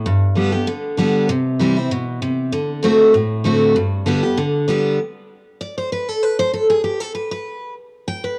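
A lightly swung 4/4 pulse at 195 BPM drives this rustic, lively bluegrass fragment in G major, cut from a longer piece, where a lone picked steel-string dreadnought guitar, bright and full-bodied and sitting up front with a cassette-tape tint and light studio reverb from a home recording, moves through G, C, D7 and back to G before breaking into an unaccompanied solo at 5.0 seconds, spanning G2 to G5 and tuned slightly flat to A4 = 438 Hz.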